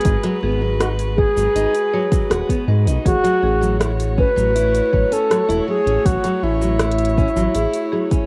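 Intimate and delicate, this 80 BPM folktronica fragment, cut from a longer piece, moves from G#m7 to A6 at 3.1 seconds as an up-front baroque flute sings a pure, wooden, tongued melody with vibrato over a rich, close string quartet sustaining bowed chords. A dark, full-bodied fingerpicked steel-string guitar plays arpeggios, while a woody marimba with analog delay adds a second line in the background and a round, deep analog bass anchors the low end. Soft electronic kick, crisp hats, rim click and shaker carry a tape-warm, home-recorded cassette sound with light reverb and vinyl crackle.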